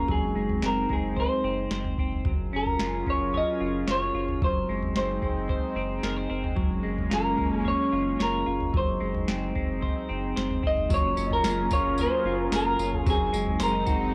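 Dreamy, floating dream pop at 111 BPM in Gb lydian, where an up-front hollow-body electric guitar carries the melody through delay and plate reverb over a swirling, detuned sawtooth pad with phaser and chorus, a picked clean electric guitar playing arpeggios, a deep, saturated sine sub bass and an overdriven vintage rhythm box with deep kick, tonal snare, tambourine and toms, while a twangy, fingered clean guitar with tremolo slips into the background at 10.9 s and a delicate, bell-like celesta sparkles very quietly from 11.3 s, all softened by worn, warbling cassette-tape pitch drift.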